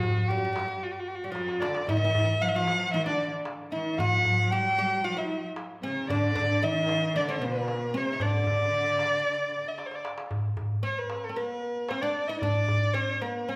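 Arabic maqam ensemble piece in D maqam huzam at 114 BPM, festive and stately, cut from a longer work, where a dark, woody solo violin with vibrato carries the melody up front over a bright, plectrum-plucked fretless oud and a lush, smooth cello section that drops out at 9.7 seconds, while a crisp metal-shell darbuka played with hard hands adds fills at 1.4 and 9.8 seconds, all set in the reverberant space of a church or concert hall.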